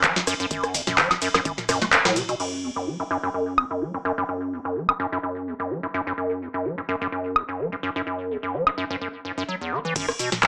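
A squelchy, hollow square-wave acid bass sits up front, playing a resonant, fast-attack riff with filter pluck, analog chorus, tape echo and sidechain pumping across this trippy, gritty acid house excerpt in F# minor at 127 BPM, with a 16th-note swing. A booming analog drum machine drives alongside it with crisp snare, metallic hats, handclaps, cabasa, woodblock, rim clicks, toms, ride and crash, while a deep electronic kick sits in the background during the opening drop, falls away at 1.9 seconds on a band accent, and returns at 10.0 seconds. The whole mix carries a wet small-room reverb and a small-speaker sound.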